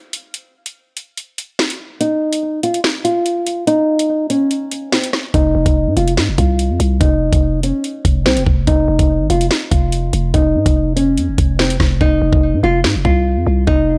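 A half-time drill groove at 144 BPM drives this tense, ominous hip hop excerpt in F minor, its electronic kit up front with a knocking kick, sharp snare, rim clicks and metallic hats that drop out at 12.0 seconds. A small, fingerpicked nylon-string guitar enters at 2.0 seconds with a melody between C4 and F4, colored by delay and a low-pass filter that sweeps through it until 12.0 seconds. After a break, a growling, buzzy 808-style bass with a fast attack and decaying tone arrives at 5.3 seconds on an F5 chord, all set in a dry space.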